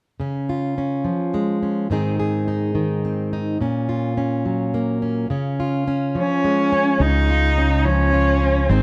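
A fingerpicked, plugged-in steel-string acoustic guitar with a full-bodied jumbo tone opens this short, hopeful folk excerpt in 6/8 at 71 BPM in Db major, moving from Db through Ab and Gb/Bb back to Db before a dark, woody bowed cello carries the melody with vibrato, plate reverb and tape echo from 6.2 seconds, joined at 7.0 seconds by a growly, punchy fingered electric bass, all in a light reverb.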